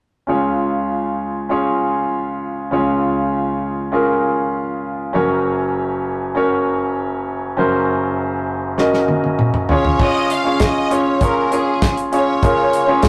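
Piano-driven pop with a warm, uplifting mood, this cut from a longer piece opens on a clear, polished concert grand piano with deep bass, joined at 8.8 seconds by a damped 70s drum kit whose fill brings in a dry, dark sound with a fat snare and tight kick, before a rich, focused violin section takes the melody with vibrato from 9.7 seconds, the whole captured in a rough rehearsal-room recording with tube saturation and moderate reverb.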